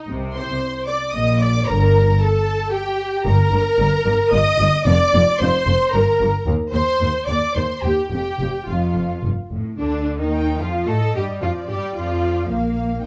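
In a quick 3/4 at 112 BPM, this cheerful, spirited classical-period movement for string orchestra moves with a flexible, rubato feel. It opens in G minor and brightens into Bb major from 3.3 s. The first violins carry the melody across a range of Bb3 to Eb6 with a smooth, even tone that sits a little distant. The second violins add a focused countermelody beneath them. Violas supply an intense, lush accompaniment, while the cellos play a close, bowed bass line and the double basses sit up front with expressive vibrato. The harmony passes through Gm, Cm/Eb and Fsus2 before a new passage at 9.8 s opens on Ebmaj9/D and settles toward Bb/F, all within a dark production with light reverb, cut from a longer piece.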